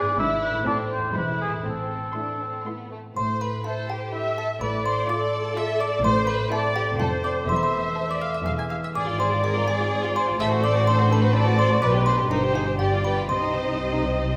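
In a straight 3/4 at 124 BPM, this sneaky, mischievous cinematic cue moves from A minor to C minor at 9.0 s, tuned slightly flat to A4 = 436 Hz. Lush violin sections carry the melody and a distant second line over expressive viola accompaniment, ringing thumb-plucked harp arpeggios, and a bowed bass of cellos and background double basses, while a mellow, up-front oboe sings a brief second line until 2.7 s. From 3.2 s a delicate, tinkling music box, dry, close-miked and slightly out of tune, joins the melody against the string ensemble's generous scoring-stage reverb.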